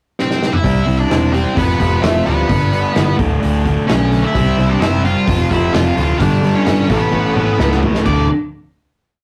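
Cathartic and restless, this short quiet-loud alternative rock piece drives at 129 BPM in a straight 4/4, with a loose indie drum kit's fill leading a pickup bar into a pre-chorus that moves from Cadd9 through Fadd9 and G6 before landing on a final D5 chord. A dark octave-fuzz lead guitar states a motif-based melody partly doubled in octaves over a thick fuzz guitar pounding eighth-note power chords, a bright picked bass driving eighth notes, and dark-cymbaled drums with a punchy kick, while a slightly broken-up, lo-fi guitar through a small old amp plays background arpeggios until 4.3 s, when a second, brighter fuzz guitar joins in the background. The rough rehearsal-room sound carries saturation and moderate reverb, and a second drum fill at 7.1 s pushes into the closing chord.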